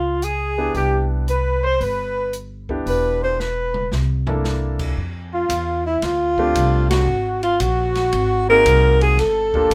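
A breathy alto saxophone carries the melody up front in this relaxed, sophisticated small-group swing and bop passage, its close-miked subtone, soft attack and vibrato giving it an intimate, whispered quality. A mellow trumpet with light vibrato and a smooth top plays a second line in the same register, sitting further back in the mix. Beneath them, a woody pizzicato upright bass with steel strings stays up front, while a clear concert grand piano with deep bass joins the accompaniment at 0.6 s. The acoustic drum kit sounds natural in a small room, with dark cymbals, a medium-tuned snare and a boomy kick; it plays a fill at 3.4 s, and the band hits an accent at 6.8 s. Cut from a longer piece, the music swings in 4/4 at 114 BPM in C major, moving through rich chords such as Cmaj7, C13, F6 and Ab9 under a light reverb.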